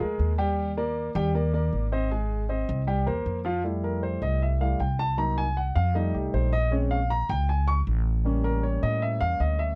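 An intimate upright piano with audible action noise and long sustain moves from accompaniment into a solo at 3.6 seconds over a thumpy, woody pizzicato upright bass, giving this short, lively and danceable Afro-Cuban jazz cut a vintage feel in a dry, close 1970s-style studio sound, with seventh and ninth chords colouring the harmony.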